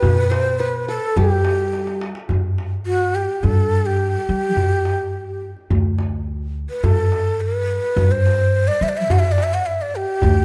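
A rough home demo mix with light reverb and studio ambience frames this festive, stately Turkish makam ensemble in straight 4/4, where a breathy, unsteady ney with vibrato leads up front over a woody, thumpy pizzicato upright bass and a deep clay darbuka that sounds distant in a large room, with a drum fill from 1.7 to 2.3 seconds, while a bright-edged, plectrum-plucked qanun adds a second line only until 2.4 seconds.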